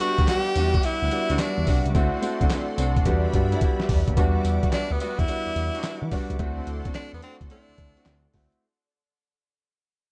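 This short R&B excerpt in a new jack swing style moves at 108 BPM in E minor, with a heavy sixteenth-note swing and a slick, confident mood. Up front, an edgy, punchy tenor saxophone carries a jazz-style solo melody, its forceful tone marked by vibrato and scooped notes. A clear concert grand piano adds intimate, polished accompaniment with audible action noise. The gritty boom bap sampler-style kit of thumpy kick, medium-tuned snare, hi-hat, handclaps and tambourine also sits up front, pitched down and compressed with tape-warm 12-bit character, while a smooth sawtooth-and-triangle synth bass glides underneath with portamento and a moving notch. In the background, a lush, detuned unison pad with chorus holds sustained chords, and a veiled, con sordino string section plays distant bowed stabs from 0.2 seconds. The harmony circles Em9, D7 and Em7, a drum fill arrives at 3.1 seconds, and the piece fades out from 4.2 seconds inside a dark, small-room ambience.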